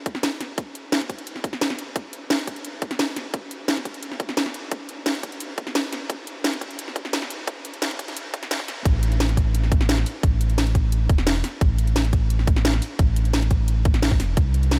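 Light reverb and a high-pass filter give this cut from a longer liquid drum and bass track a dreamy, lush sheen. In the build-up, a layered, overdriven drum kit with a cracking snare and bright hats sits up front beside a tight, filtered electronic kick. At 8.9 seconds the drop arrives with a deep, full sine sub bass doubled at the octave, its fast attack and sustained notes pushed forward in the mix.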